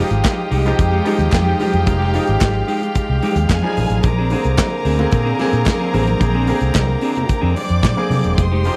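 A straight 4/4 disco groove at 111 BPM drives this glamorous, danceable excerpt, cut from a longer piece and moving from Fm9 to Bb9 over about 8.8 seconds. Up front, a modern studio drum kit with a punchy kick, medium-tuned snare, hi-hat and handclaps sits beside a dark, foam-muted fingered electric bass with a round, amped tone that spans E1 to C3. A clear grand piano, polished and intimate with audible action noise, plays accompaniment alongside a clean, picked semi-hollow electric guitar carrying a vibrato effect further back, while a tonewheel organ with a stopped rotary speaker holds sustained chords in the background. Meanwhile, a lush, bowed studio string section carries a second line between G4 and D6, focused and close, with a slapback echo. Very quiet congas, ringing and distant as if in a large room, and a hollow, dry group handclap add percussion to a close 1970s-style studio sound.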